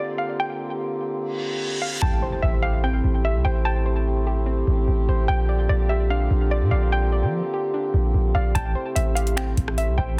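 With little reverb and a dense, heavily limited master, this hazy, melancholic cloud-rap excerpt moves at 147 BPM in a half-time feel in A phrygian, opening on a woody, mallet-like synth pluck melody with chorus, low-pass filtering and tape echo over distant, roomy French horn chords pumping with sidechain. A reverse cymbal rises into an electronic impact at 2.0 seconds, where a boomy 808-style bass and a soft, round arpeggiated pluck enter as the harmony shifts between Bb69 and Am7. At 8.6 seconds a booming analog drum machine arrives with a deep kick, metallic hi-hats, finger snaps and rim clicks, with soft clipping on the snare.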